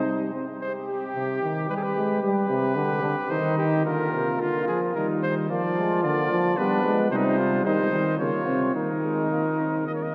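Elegant and stately, this fragment of an imitative classical canzona for brass ensemble moves in 3/4 at 110 BPM in C minor, with an up-front trumpet carrying the smooth-topped melody with light vibrato over a distant, roomy flugelhorn second line, a mellow trombone accompaniment that sounds briefly at the opening and returns at 3.9 seconds, and a warm, up-front euphonium bass, the ensemble set in a wet cathedral reverb.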